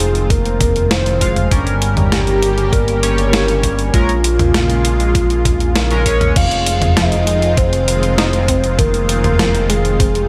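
A straight 4/4 pulse from an overdriven, thumpy electronic kick and a clean 12-bit drum machine with a medium-tuned snare and gated reverb drives this nocturnal, moody synthwave excerpt, where a round, dark octave-layered lead with vibrato and tape echo carries the melody over a glossy, up-front chorused synth bass and a lush, detuned unison pad with phaser and sidechain pumping, while a chorused polysynth adds stabs from 1.2 to 6.3 seconds and a very quiet, warbling, lo-fi pluck enters with arpeggios at 6.4 seconds, inside light digital ambience.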